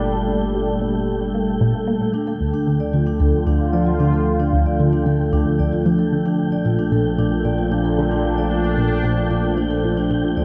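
Ambient, sequencer-driven space music in D minor at 113 BPM in a straight 4/4, this hypnotic, cosmic passage is cut from a longer piece. A sweeping, resonant pad with chorus sits up front from the start, holding sustained chords that move from Gmadd9 to Dm at 2.1 seconds and to Bbmaj7 at 6.4 seconds. Beneath it a round, deep sub bass holds the low end, while an airy, breathy wind-like noise texture hovers high above on a single G5. At 0.3 seconds a tight sequenced synth enters with a driving, detuned riff, its plucky sawtooth-and-square tone coloured by chorus, phaser and analog delay. A soft-mallet vibraphone joins at 2.1 seconds with ringing, metallic arpeggios echoed through analog delay. The dreamy mix is soaked in a lush hall reverb with a 2.9-second decay.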